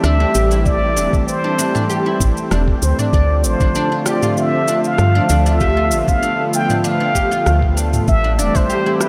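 A straight 4/4 groove of cabasa, rim click and toms from an electronic afro-pop kit, joined at 0.7 s by a gritty, thumpy sampler-style kick, drives this earthy, mystical organic downtempo excerpt, where an up-front, round, dark FM bass with tube saturation and sidechain pumping sits beneath a detuned sawtooth pad that warbles with chorus and pumps too, a plectrum-plucked fretless oud spins woody arpeggios through tape echo, and a breathy plunger-muted trumpet sings a wah-wah jazz melody with vibrato through vintage 12-bit sampler grit and tape echo, all soaked in a huge, dreamy reverb.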